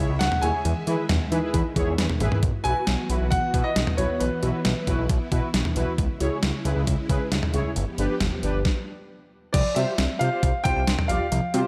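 Set in a light digital ambience, this bright, upbeat synth-pop fragment is driven by a clean, overdriven 12-bit drum machine up front with a thumpy kick, medium-tuned snare and gated reverb, a fat, nasal analog bass, bold, brassy synth brass with chorus and vibrato, vintage string-machine violas and a soft, round pluck tucked in the background, while a warm concert grand piano carries the melody through tape echo, dropping out at 4.8 s and returning at 9.5 s after a brief stop from 8.7 s.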